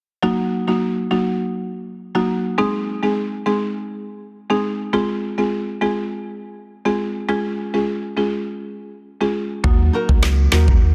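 A buzzing, woody marimba with sidechain pumping opens this hypnotic, sultry dancehall passage at 102 BPM in Eb dorian at 0.2 s, cycling through Ebm, Ab, Fm and Db with light reverb in a small room, until a knocking, electronic island pop kit with a woody snare, handclaps and rim clicks arrives with a thick, saturated sub bass at 9.6 s, and a dark, boxy fingerpicked nylon-string guitar adds quiet arpeggios from 9.9 s in a dense, heavily limited modern master.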